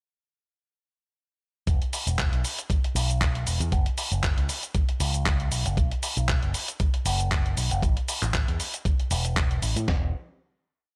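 Feel-good and sunny, this short nu-disco piece at 117 BPM drops in at 1.7 seconds with a gritty, tape-warm sampler-style soul drum kit, its thumpy four-on-the-floor kick, medium-tuned snare, handclaps, hi-hat and shaker riding a disco backbeat with a light 16th-note swing, while an amped, picked electric bass through an envelope filter runs a syncopated riff up front, all dry and close before a final chord rings out from 9.9 to 11.0 seconds.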